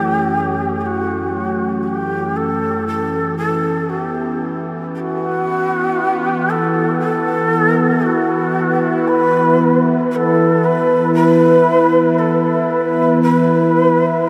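A breathy bamboo shakuhachi carries the melody between F#4 and B4, its tongued chiff, vibrato and unsteady tone set in delay so it sounds distant while still sitting up front. Beneath it, a detuned sawtooth pad fades in across the full 14.3 seconds with a slow attack, filter swell, chorus and long release, moving from F#m to Esus4 at 2.9 seconds in a bright, evolving sustain. Cut from a longer piece, this desolate, ominous dark ambient drone at 58 BPM is steeped in a huge, wet reverb.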